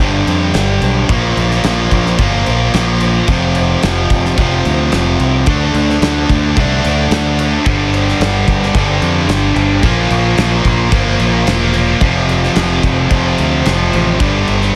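A distorted electric guitar leads this restless, anthemic slice of quiet-loud alternative rock, its bright, overdriven riff sitting up front over a straight 4/4 pulse. Beneath it, a growling fingered electric bass adds a punchy, amped edge of its own, also pushed forward in the mix. A loose indie drum kit comes in at 0.3 seconds with crash cymbal, kick and snare, its dark cymbals, punchy kick and rolled-off top heard in a pumping studio room. At 7.7 seconds a heavy high-gain guitar joins in the background, thickening the riff with a second distorted layer as the chords move through G5, Bb5 and F5 before returning to G5. The sound is dry and dense, with a heavily limited modern master, and the passage is cut from a longer piece.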